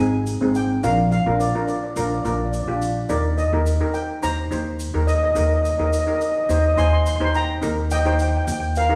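A carefree, bouncy calypso excerpt opens with a mellow, airy lead steel pan carrying the melody over a boxy second pan's accompaniment and a woody, pizzicato upright bass, as the harmony moves from Ab through Bb to Eb, while a grainy tube shaker sits low in the mix, all ringing in the lingering reverb of a recital hall.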